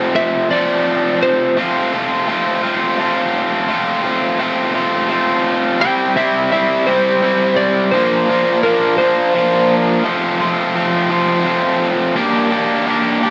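A bright, overdriven garage guitar opens this carefree, jangly rock excerpt. Its double-tracked, picked riff sits up front in 6/8 at 57 BPM, tuned to A4 = 437 Hz. A twangy, slightly broken-up lead guitar, compressed and warm, plays a brief solo melody from 0.2 to 1.6 seconds and returns at 5.8 seconds as the chords move from F through C, Bbadd9 and back to F before landing on Gm, all set in moderate studio reverb.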